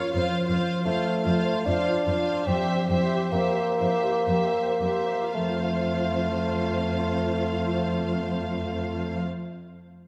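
Classical orchestral music in 3/4 with a serene mood and a rubato feel, heard as a short fragment of a longer piece. A rich, focused violin section carries the melody with a smooth top and vibrato, while a darker second violin section with a soft attack plays its own line in the background. Up front, a close-miked solo bassoon adds mellow accompaniment with light vibrato, alongside a viola section using vibrato and portamento and an expressive cello section holding a single bass note. A fingerpicked concert harp plays ringing arpeggios in the background and carries on to 9.5 seconds, just after the lush bowed strings stop at 9.2 seconds. The music slows through the opening 5.3 seconds as the harmony moves from F to C7/F and back to F, all set in a wet concert hall reverb.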